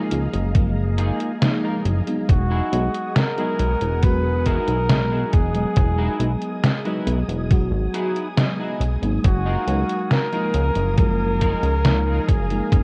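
A clear flugelhorn carries the melody from 2.3 seconds, its light vibrato, soft attack and scooped notes giving this faded, nostalgic vaporwave excerpt a smooth pop-style lead with tape echo. Beneath it, a dreamy FM electric piano with a soft pad layer shimmers with tremolo, lush chorus and analog delay, while a bright, clean semi-hollow electric guitar picks a riff through chorus and delay, and a silky string machine holds sustained chords in the background as the harmony moves from F#maj13 to Emaj9 and back. A glossy, tube-saturated synth bass and a thumpy electronic kick sit up front with a detuned 8-bit drum machine's hi-hat and snare, all washed in light digital reverb and the warbling pitch drift of worn cassette tape.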